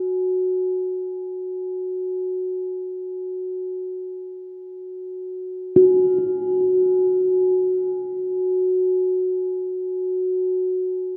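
World meditative music in free time, this spacious, haunting fragment of a longer piece features a solo quartz singing bowl, struck with a felt mallet and tuned to A4 = 439 Hz, ringing a pure, mellow F#4 with slow beating and a touch of delay from 0.0 to 9.3 seconds, held up front within a vast, echoing cathedral reverb, with the fragment closing at 10.2 seconds.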